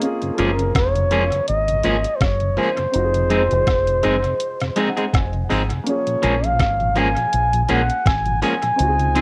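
Smooth and bittersweet, this 9.2-second slice of lovers rock reggae moves at 82 BPM in Bb minor with a lightly swung 4/4 feel, drifting through Gbmaj9, Fm7 and Bbm7 over a detuned 8-bit drum machine with a thumpy kick, hi-hat and rim click, and a deep, round, punchy dub bass played with the fingers. A breathy, dark flugelhorn carries the melody up front with vibrato and a jazz phrasing, bathed in analog delay and plate reverb, while a slightly broken-up, twangy electric guitar adds stabs and a mellow, flute-like tonewheel organ with key click turns on a slow rotary speaker in the background. A grand piano supplies accompaniment through analog delay and adds a fill from 4.4 to 5.9 seconds, and the whole piece has the intimate, tape-softened character of a home cassette recording in a moderate room.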